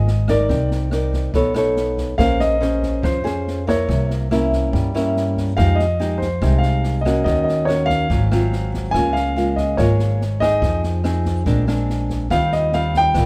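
Bossa nova in F minor at 142 BPM in a straight 4/4, this short passage cut from a longer piece feels wistful and smooth. A grand piano carries the melody between C5 and Ab5, its tone intimate and up front, with audible action noise. Beneath it, a fingerpicked nylon-string guitar supplies the accompaniment, small-sounding and close, with finger squeak, while a pizzicato upright bass with steel strings holds the low end between Ab1 and G2 in a woody, dark, thumpy voice. An open jazz kit in a small room plays kick drum, rim click and snare from 0.1 s, set lower in the mix, with a boomy kick and a medium-tuned snare. The harmony moves through rich extended chords such as Cm9, C7b9, Fm9 and Ab6 before settling on Eb69, all under a light reverb.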